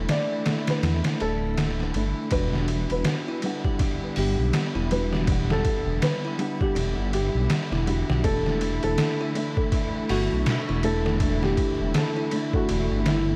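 A dry sound with a bed of vinyl crackle frames this hypnotic, smoky trip hop fragment, where pitched-down, muffled sampler drums with a thumpy kick and overdrive sit up front beside a deep, rumbling detuned saw bass. A soft, felt-muted upright piano carries the melody through dub echo, its action noise audible, while a clean, fingered electric guitar adds accompaniment through harmonic tremolo and tape echo, and a woody string section holds gritty, sampler-textured chords underneath. A barely audible, nasal drone opens the passage until 2.3 seconds, when a delicate, tinkling music box enters in the background with band-limited arpeggios as the harmony moves from Dsus2 to Em7.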